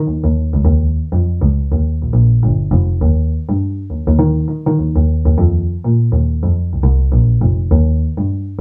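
Funk in 4/4 with a swung sixteenth-note feel, this short, funky and energetic excerpt features a lone muted double bass playing solo from 0.0 to 8.3 seconds. The single bowed player sits up front yet sounds veiled and distant, its dark, con sordino tone colored by vibrato. Light reverb lends a touch of space to the sound.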